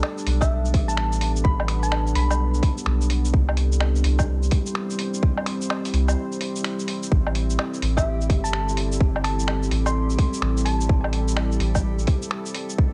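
Future garage at 127 BPM in A minor with a swung 16th feel, rainy and wistful, drifting from Gadd9 to C to Am7 over a deep, moody pad with chorus, reverb and sidechain pumping beside a soft, round dub sub bass that pumps too. An overdriven, tight electronic kick sits up front, and a muffled, pitched-down sampler-style kit of finger snaps, hi-hat, shaker and woodblock carries 12-bit grit. A tine-like, warbling thumb-piano pluck with chorus and analog delay plays the melody in two passes, returning at 8.0 s after a short break at 6.2 s, while a reversed, dreamy swelling texture enters in the background at 8.1 s, all over a cassette-tape sheen with light reverb and digital ambience.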